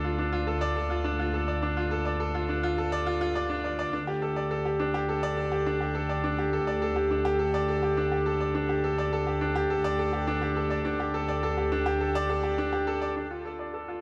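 A straight 4/4 pulse at 104 BPM carries this moving, intimate piano and strings electronica fragment, tuned to A4 = 441 Hz. A bright, woody upright piano sits up front with long sustain, playing a riff between D4 and D5 through a low-pass filter and tape echo. Beneath it, a dark, nasal bowed double bass section with gut-string tone and light vibrato holds a low D until 13.1 seconds, as the harmony moves from Dm to Gsus2/D at 3.9 seconds and back to Dm, all within a huge ambient reverb.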